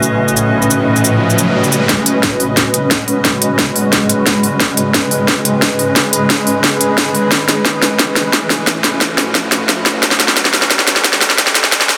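Up front, a layered drum and bass kit of cracking snare, crisp hats and shaker drives this tense, futuristic cut of dark technical drum and bass at 177 BPM in G# phrygian, over an eerie, metallic FM drone with chorus and sidechain pumping and a cloudy, detuned granular pad. A background riser enters at 0.6 s, and a tight electronic kick joins at 1.9 s as a build-up, drum fill and filter sweeps take hold, set in a lush hall reverb with a dense, heavily limited master.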